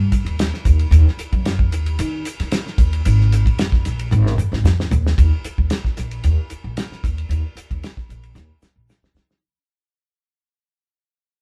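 A moderate studio reverb gives this short cut from a longer piece the feel of a band playing live together in one room. It is funky, nocturnal electric jazz fusion in Eb minor, moving at 113 BPM in a straight 4/4. A woody, growly upright bass played pizzicato on steel strings sits up front, ranging from Ab1 to Eb3 and carrying the low end from the opening second. A damped 70s drum kit joins almost at once, sounding dry and warm, with a tight kick, dark cymbals, a medium-tuned snare and a rolled-off top across hi-hat, kick, ride and toms. Drum fills arrive at 4.1 seconds and again at 8.4 seconds, and the recording fades out over its second half.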